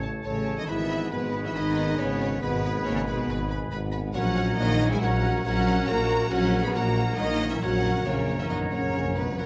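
Determined and adventurous, this heroic cinematic film-score passage carries its melody on a lush, expressive symphonic violin section, with second lines from an airy, bright flute ensemble, a dark clarinet, a focused studio violin section and a vintage-toned oboe, while a close viola section accompanies, a mellow French horn section holds sustained chords, a ringing, very quiet concert harp plays arpeggios, and a woody cello section, soft-attacked double bass section and roomy tuba anchor the bass, the whole scored in a moderate scoring-stage reverb until articulate hard-mallet timpani enter with a fill at 7.6 s.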